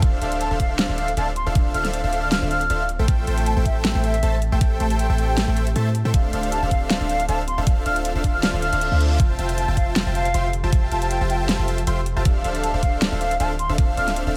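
This bittersweet, emotional future bass excerpt opens straight into a full texture at 157 BPM in D minor, with a half-time feel and a light swing on the sixteenths. A knocking electronic kick sits up front beside a deep, boomy 808-style bass, while a layered dubstep kit adds hi-hat and a huge, overdriven snare. A thick, bright supersaw riff, detuned and compressed, joins a soft, dreamy arpeggiated lead with chorus in the background and an ethereal pad that holds sustained chords through ensemble chorus, phaser and its own reverb. From 0.4 s a mellow silver concert flute carries the melody with expressive vibrato and a digital delay, and it pumps with sidechain along with the supersaw, bass, lead and pad. The harmony moves through Dm9, Am7 and Fmaj9, a faint reverse cymbal appears in the background at 8.6 s, and the overall sound is dry.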